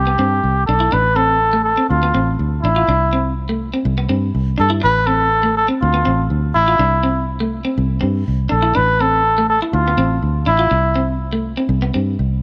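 Highlife guitar band music at 122 BPM in A minor, danceable and warm, this excerpt from a longer piece sets a cup-muted trumpet up front playing a mellow, veiled jazz-style solo with light vibrato and a soft attack over a round, foam-muted fingered electric bass, also up front, and a bright, twangy, picked clean electric guitar accompaniment cycling through C5, Am, Dm7 and Am/C in a lightly reverberant space, until the trumpet stops at 11.2 seconds while the guitar carries on to 12.1 seconds and the bass to 12.4 seconds.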